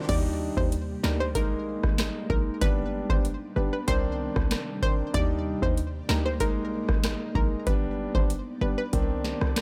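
Summery and bouncy, this short dancehall clip moves at 95 BPM in a straight 4/4 in Eb major, cycling twice through Ebmaj7, Bb7sus4, G and Cmadd9. A booming analog drum machine sits up front with a deep kick, crisp snare, metallic hi-hats, rim clicks and crash cymbal, its sound carrying the weight of a large room. Beneath it, a short 808-style bass hits punchy and tight, its sine tone and noise layer striking fast and then decaying. A warm concert grand piano with a deep low end supplies the accompaniment, while a very quiet, ethereal pad holds mellow, airy chords with a slow attack and long release. Starting at 0.1 s and stopping at 8.9 s, an analog pluck carries the melody with a round, full-bodied, bright sawtooth tone, a filter sweep, a short decay, chorus and delay, all set in a digital ambience.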